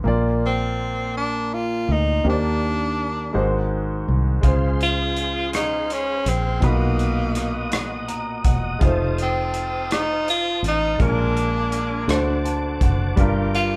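In a straight 6/8 at a slow 55 BPM, this soulful, jubilant gospel excerpt opens on a clear, intimate baby grand piano with audible action noise, joined by a punchy, foam-muted fingered electric bass and an up-front tenor saxophone melody, bright and jazzy with vibrato and scooped notes, before a tonewheel organ with key click, chorus vibrato and fast rotary speaker and a soul drum kit with a tight kick, rolled-off top, hi-hat and rim click enter at 4.4 seconds, the piano adding fills at 7.7 and 12.1 seconds as the band plays live in a large studio's moderate reverb.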